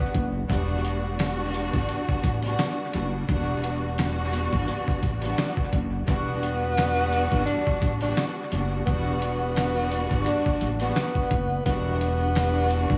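A loping 86 BPM groove in 4/4 with a light 16th-note swing drives this moody, dark boom-bap hip-hop excerpt in E minor, resting on a single Em7 chord: a compressed, pitched-down sampler-style kit with a thumpy kick, a medium-tuned snare, hi-hat, overdrive and analog delay plays alongside a woody pizzicato upright bass. A lush bowed string section carries the accompaniment up front, expressive with vibrato and portamento and tinted by cassette tape and analog delay, while a breathy subtone tenor saxophone sounds briefly at the start, then returns at 6.1 seconds for a whispered, intimate jazz-style solo with scooped notes and its own analog delay. The echo-heavy mix has light reverb, small room ambience and vinyl crackle.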